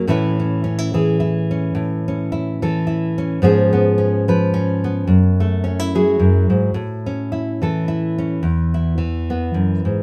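Peaceful and pastoral, this folk excerpt at 108 BPM in 3/4 with a light swing features a solo fingerpicked nylon-string guitar, full-bodied and deep classical in tone, sitting up front in moderate studio reverb as it moves through Aadd9, A, C#7/G#, F#m7 and back to A before a new section opens on E5 at 8.4 seconds.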